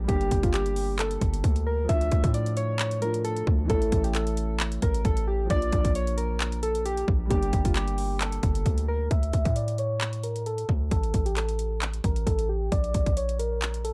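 A dry trap cut from a longer hip hop piece moves at 133 BPM with a half-time feel in D harmonic minor, carrying a dark, melancholic mood. A punchy, heavy 808-style bass with a noisy edge and a trap kit of hard-clipped kick, metallic hi-hats and handclaps sit up front, while soft, round electric-piano-like synth keys carry the detuned, wave-folded melody through chorus, a low-pass filter and tape echo. A boxy, deep concert grand adds long-sustaining chords over Gm, Dm, A and Bb until it drops out at 9.1 seconds, when the harmony shifts toward D5 and Gmadd9/A.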